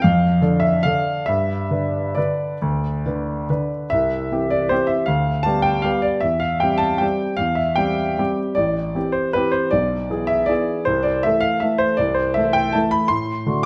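A solo grand piano carries this short classical waltz, its tone warm and present and placed up front, ranging from A1 up to C6. The piece moves in 3/4 with a rubato feel, the tempo flexing between 132 and 173 BPM, and its mood is playful and elegant. Set in C major, the opening passage leans on Dm/F and G before a second section begins at 3.9 seconds, settling on C and moving through G7/D, C/E, Am7 and E7/B. The harmony turns toward the minor with Am/C and closes on D7/A at 13.1 seconds, leaving the phrase open since the clip is cut from a longer piece. A moderate recital hall reverb surrounds the instrument, giving its up-front sound a gentle sense of space.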